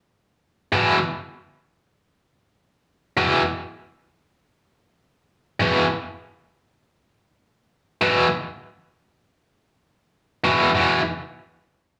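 Rock in free time with a rowdy, swaggering mood, this short cut from a longer live gig features a lone biting, overdriven electric guitar, bright, picked and double-tracked up front in the low register, playing solo from 0.7 to 11.0 seconds with tremolo and slapback echo on an E5 chord, heard through the venue's PA in a moderate club reverb.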